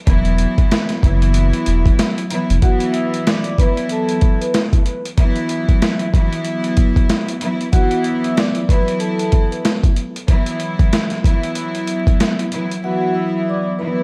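A floating, sul tasto string section, a deep, round sub bass and a gritty, compressed sampler-style drum kit with a thumpy kick, medium-tuned snare and hi-hat open this moody, tough boom-bap hip-hop excerpt on swung sixteenths, and at 2.6 seconds the bass drops away as a metallic, ringing vibraphone with tape echo and slow motor vibrato takes the melody, carrying on over the strings after the drums stop at 12.8 seconds in a dreamy, reverb-soaked mix flecked with vinyl crackle.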